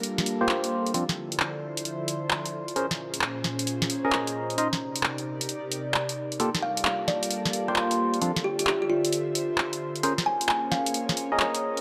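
A swung two-step garage groove at 132 BPM in G minor, built on a punchy, tape-warm analog drum machine of handclaps, hi-hat and snare, carries this bouncy, soulful UK garage excerpt, where an airy, breathy pad holds sustained ninth chords beneath a warbling, lo-fi tape-like pad, a hollow, nasal organ stab enters at 0.4 seconds with chorus, digital delay and a filter sweep, and a woody, ringing kalimba melody with delay joins at 6.6 seconds, all set in a moderate plate reverb.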